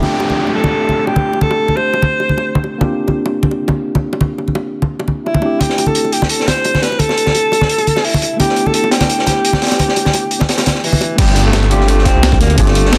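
A roomy alto saxophone with a singing vibrato carries the melody of this melancholic, rolling liquid drum and bass excerpt, drifting through delay over a clean tine electric piano and bright, close, dry bongos and congas, while a background downlifter sweeps beneath. A crunchy, dark breakbeat kit with a high-tuned snare and rolled-off top enters at 5.6 seconds. At the drop at 11.2 seconds, a deep, rumbling detuned saw bass, an overdriven knocking electronic kick and a gritty, compressed sampler-style breakbeat with crash cymbal push forward in a dense, heavily limited mix.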